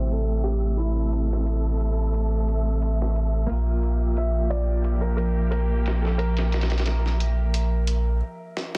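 A deep, round sine sub bass sits up front in this hypnotic, melancholic trip hop excerpt, holding low beneath a chord change from Am7 to Gm7/Bb at 3.5 seconds. A soft, felt-muted upright piano carries the melody with audible action noise and tape echo, while a bright, twangy twelve-string electric guitar plays clean, picked accompaniment in the background, treated with tremolo and tape echo. A dark chamber string section holds smooth, bowed chords with vibrato and a soft attack, its tone shaped by a filter sweep. A gritty, compressed sampler-style soul kit with lightly swung hi-hat and snare sounds as though re-recorded in a large room, its parts thinned by high-pass filtering. An airy, breathy, wind-like noise layer hovers in the background, and once the other parts end at 8.2 seconds, a drum fill arrives at 8.6 in a dense, heavily limited, dry mix.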